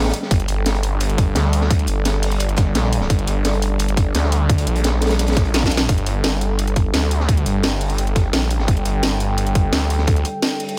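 Dark technical drum and bass at 172 BPM in G minor, this short cut from a longer piece feels aggressive and tense. A snarling, growling saw bass sits up front from the start, its detuned unison tone distorted, tube-saturated and pumping against the sidechain. Beneath it, a deep, moody ambient pad holds sustained chords with a slow attack and long release, its warbling chorus and built-in reverb lending a vintage haze. The drums are layered: an overdriven electronic kick enters at 0.3 seconds, tight and forward, alongside a produced kit with a cracking snare and bright hats, while a crunchy breakbeat kit sits in the background with a high-tuned snare and a gritty, rolled-off top. A brief drum fill arrives at 5.5 seconds, and the whole track sits in a small, lightly reverberant room.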